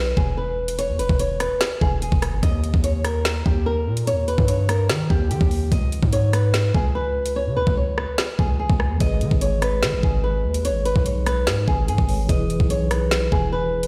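From the start, a punchy, heavy 808-style bass with a fast attack and decaying sine tone sounds, and at 0.2 seconds a half-time drill groove at 146 BPM joins it, with a knocking kick, woody snare, rim clicks and metallic hi-hats on an up-front electronic kit. Over this menacing, ominous hip hop excerpt in G# harmonic minor, a fingerpicked acoustic flamenco guitar carries the melody from the opening moment with audible finger squeak and tape echo. The hi-hats drop out from 7.4 to 9.0 seconds before a mellow, clean tine electric piano joins at 9.0 seconds, sounding as if through built-in speakers. The whole mix sounds played on a big sound system in a bare room, giving it a stone room reverb.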